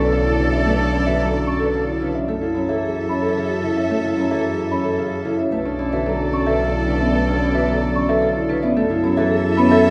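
A woody, rustic folk marimba plays arpeggios in this hypnotic, bright minimalist classical pattern piece in 3/4 at 111 BPM, alongside a bell-like, slightly out-of-tune celesta's arpeggios, a fingerpicked, ringing Celtic harp accompaniment, a dark, metallic vibraphone melody with fast motor vibrato sitting in the background, a clear, distant oboe second line, rich, smooth bowed violin-section chords and a focused bowed double bass, all moving between Bm9 and F#m9 in a wet recital-hall reverb heard from further back in the room.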